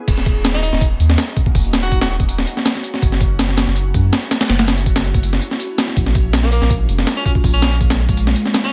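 Dark and atmospheric, this drum and bass excerpt at 163 BPM opens straight into a drop, with a gritty, pitched-up breakbeat kit of thumpy kick, high-tuned snare, hi-hat and crash sitting up front over a deep, round dub sub bass, while a detuned, ethereal pad drifts in the background through chorus, reverb and phaser. Over chords moving from Ebm7 to Gbm7 at 3.0 seconds and Bbm7 at 6.0 seconds, a punchy, jazz-style tenor saxophone solo with vibrato cuts through in dub echo, first from 0.5 to 2.2 seconds and again from 6.4 seconds onward.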